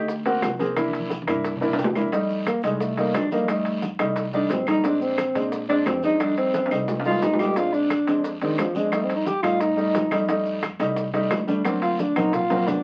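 A brisk, straight 4/4 groove at 176 BPM drives this sunny, sophisticated slice of Afro-Cuban jazz in F mixolydian, cut from a longer piece. Ringing metal-shell timbales sit closest to the front of the percussion, with tight, high-tuned bongos played with hard hands, bright thin-skinned congas and woody claves set further back, a raspy guiro and grainy, mellow maracas filling in the texture. A baby grand piano, up front and intimate with audible action noise and short sustain, comps through chords such as C9, F9 and Bb9 and slips in a fill just before the saxophone arrives, while a dark, thumpy upright bass on gut strings plays pizzicato underneath. At 2.5 seconds a breathy tenor saxophone takes a whispered, subtone solo, with vibrato, scooped notes, a smooth top and a soft attack, sitting up front and close to the listener. Drum fills punctuate the form, the last one closing out the passage at 12.8 seconds on a D7alt turnaround. 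Everything is heard through a moderate club ambience and the crackle of a very old 78 rpm record, giving the date a hazy, vintage glow.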